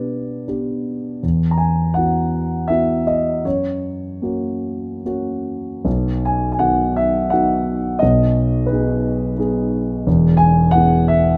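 Close, detailed microphones and light reverb put a dark concert grand piano up front, its mellow, boxy tone and deep bass set off by audible action noise. This short passage of lyrical classical solo piano, cut from a longer piece, moves in a rubato 3/4 at 68-90 BPM in B major, with a warm, sunny mood. The piano plays alone for all 11.4 seconds, moving through chords such as Esus2, F# and G#m/B before settling on E.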